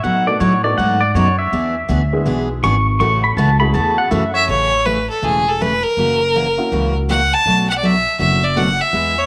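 Western swing country in A major at a brisk 162 BPM with a playful, cheerful swung feel, opening on a twangy, up-front pedal steel guitar solo over a bright dreadnought acoustic guitar, a dark, woody pizzicato upright bass and a jangly, detuned honky-tonk upright piano, before an intense, boxy bowed fiddle takes the melody at 4.3 seconds, all set in a moderate echo chamber reverb with a faint mains hum.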